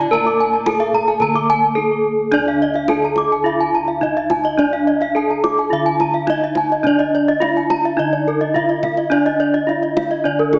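A bright, up-front bronze metallophone carries the melody in this shimmering, ceremonial excerpt of Balinese gamelan in D pelog at 106 BPM, struck with a horn mallet and ringing with the beating of its paired tuning. Two close-miked metallophones played with wooden mallets spin arpeggios above it, one trailed by tape echo, while soft bossed gongs played with padded beaters hold a round bass and a tight kendang sits in the background from 0.3 seconds. In the opening moments a mellow metallophone played with padded disc mallets adds accompaniment until 2.3 seconds, and a nasal lap resonator guitar played with slide and fingerpicks sounds a brief second line, with the mix set in a wet concert hall reverb and a small-speaker sound.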